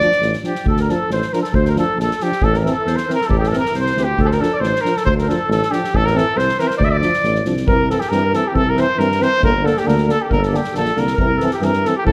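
A mellow, lightly vibratoed trumpet carries the melody from the first moment, set a little back in the room over a clear, close clarinet second line, French horn and soft-attack euphonium accompaniment, and a soft-mallet drum kit with a punchy kick and medium-tuned snare, while a tuba with vibrato enters on the bass at 0.2 seconds. This restless, bittersweet slice of Balkan brass band folk moves at 137 BPM in 2/4 with a straight feel in D minor, alternating between D minor and A minor before turning to C and G minor at 7.7 seconds. The classically played brass and reeds sit in a moderate recital hall reverb, with the trumpet and tuba most prominent and the clarinet, horn and euphonium in the background.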